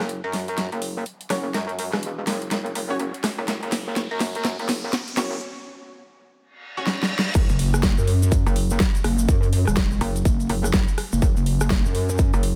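A gritty, aggressive bass house excerpt at 124 BPM in 4/4 with a swung 16th-note feel opens on a metallic, FM-flavoured wobble bass, saturated and compressed with chorus and sidechain pumping. Alongside it, a big-room dance kit with a huge snare, metallic hats, rim clicks and crash cymbal plays drum fills through a build-up. Background sound effects bring a riser and a reverse cymbal, while a bold, detuned sawtooth stab in the manner of an orchestra hit cuts in with a filter sweep, built-in reverb and dub echo before a short break. At 7.3 seconds the drop lands with an impact, a punchy up-front electronic kick and a grainy, mellow tube shaker in the background, joined a moment later by a heavy, pulsing pluck wobble bass with overdrive and chorus. The mix is dry and up front, with the drums re-recorded in a small room for an aggressive club sound.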